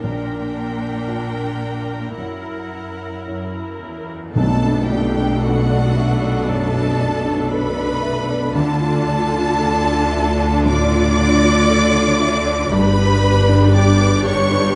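Cinematic, emotional film score for orchestra, uplifting and hopeful in a slow rubato 4/4, where a warm violin section sings an expressive melody with vibrato and portamento over dark, mellow grand piano, rich violas and cellos, and a background cymbal swell and tam-tam, until a distant second violin line enters at 4.3 s and, at 4.4 s, clear focused double basses and very quiet timpani join in a band accent, all in a moderate scoring-stage reverb.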